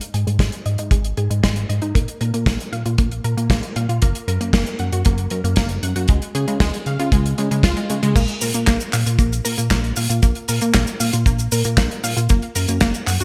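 Italo disco with a nostalgic, melodramatic mood, cut from a longer piece. It is driven by a tight, up-front kick drum and a damped 70s drum kit of cabasa, crash cymbal, handclaps, hi-hat and snare, dry and polished with dark cymbals and a touch of gated reverb. A glossy, chorused synth bass sits beneath lush, detuned unison pluck arpeggios that carry delay and a filter sweep until 8.2 seconds, all in a bright 1980s-style digital production.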